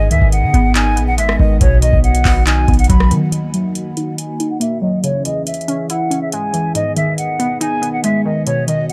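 Hip hop with a trap edge, this melancholic, dark fragment moves in a half-time feel, cut from a longer piece. A hollow, airy concert flute carries the melody with vibrato and a crisp, close-miked attack, softened by a low-pass filter and trailed by tape echo. Beneath it, a glassy, crystalline wavetable pluck with chorus plays the accompaniment and undergoes a filter sweep from 3.3 seconds onward, while a smooth, detuned sawtooth pad holds sustained chords further back in the mix. The overdriven analog drum machine sits up front with a deep kick, metallic hi-hats, handclaps and rim clicks, and it carries the grit of being re-recorded in a small room. A clean, boomy 808-style sine bass rumbles in the background until 3.3 seconds, when it drops away as the harmony shifts from Abm and B toward Ebm, Dbm and back to Abm, all within a digital ambience.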